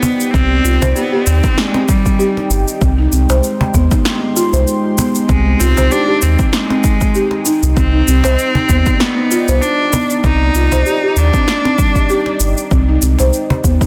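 Warm, earthy organic downtempo cut from a longer piece, where a clear, focused bowed cello sings an up-front vibrato melody with tape echo until 12.4 seconds over a buzzing, woody marimba played with soft mallets in tape-echoed arpeggios, a smooth detuned analog pad holding chorused, sidechain-pumped chords, and a hard-handed cajon, while from 0.3 seconds a deep, round sub bass and an overdriven electronic kick join the punchy overdriven electronic snare and shaker in a lightly reverberant, dense, heavily limited modern mix.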